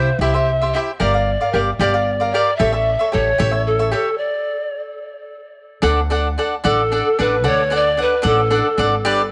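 A breathy wooden pan flute opens this passionate, dramatic mariachi-flavoured folk passage, singing the melody up front with vibrato, tongued attacks, a soft chiff and a tape echo trailing behind it. Alongside it, a crisp, picked cavaquinho and a thumpy, woody pizzicato upright bass play from the first moment, both close and present. The feel is a loose, rubato 6/8, with the harmony moving from C through Gm7 to A7 before the music halts in a dramatic stop from 4.2 to 5.8 seconds. The ensemble then resolves onto a D chord for the closing phrase, with the flute ending at 8.9 seconds as the strings ring on briefly. A light, small-room reverb gives the short fragment an intimate sound.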